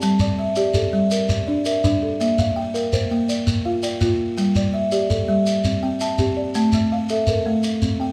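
Hypnotic and trance-like, this short excerpt from a longer piece is a southern African traditional mbira-style interlocking cycle in 12/8 at 110 BPM in G dorian, where a round, woody folk marimba with soft mallets and a buzzing, fingertip-plucked kalimba spin arpeggios over Gm, Bb, G5, C and A5 while a grainy shekere sits farther back, all bathed in a moderate recital hall reverb.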